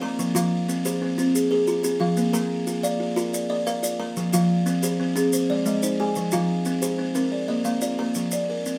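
A straight 12/8 pulse at 120 BPM carries this hypnotic, trance-like fragment of southern African traditional music in F dorian, where an up-front buzzing kalimba's fingertip-plucked, ringing, airy arpeggios interlock with a second kalimba's short, boxy thumbnail-plucked figures in an mbira-style cycle over Fm, Bb and Ab, while quieter, grainy maracas sit close and the live one-room take carries a moderate studio reverb.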